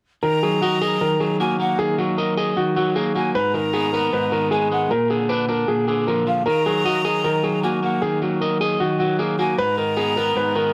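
Dark and melancholic, this half-time hip hop excerpt at 154 BPM in Eb harmonic minor sets a smooth, vintage grand piano melody, filtered and touched with delay, up front beside a twangy electric guitar on the edge of break-up, while a breathy, hollow jazz flute carries a distant second line with its own delay over Ebm, Abmadd9 and Bb chords in a small, lightly reverberant room.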